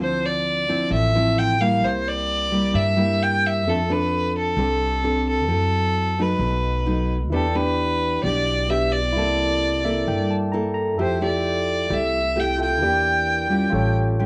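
Romantic and relaxed, this bossa nova fragment is carried by a rich bowed fiddle with light vibrato, over a fingerpicked nylon-string guitar with a cassette-tape tint and a woody, growly pizzicato upright bass moving through lush chords such as Dm9, C13 and Fmaj9. At 7.3 seconds a barky, lightly overdriven tine electric piano joins in, adding brief fills around 9.6 and 14.0 seconds. The whole has the intimate feel of a home cassette recording in a lightly reverberant room.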